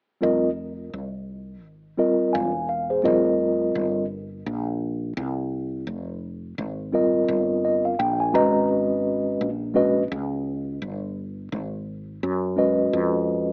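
Filtered through an AM radio tone with light reverb, this smoky, nocturnal jazz-hop fragment at 85 BPM sets a mellow, up-front tine electric piano over a woody, punchy fretless electric bass, both running from 0.2 to 13.5 seconds with a swung 16th-note feel, the piano slipping in a fill at 7.3 seconds as the harmony shifts from Fm11 to Abm11 at 8.3 seconds.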